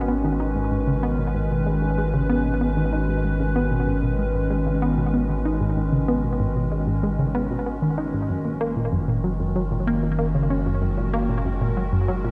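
An evolving, detuned wavetable pad opens this mysterious, hypnotic ambient excerpt, its bright, warbling chords sitting up front with chorus and their own reverb, while a deep, round sub bass in sine tone holds the floor with a touch of tube saturation. A tight, driving sequenced synth riff joins at 0.1 seconds, its mellow sawtooth filter pluck dressed in chorus, cassette tape colour and delay. The dreamy mix is soaked in plate reverb, with a shift from G#m to F# at 8.3 seconds.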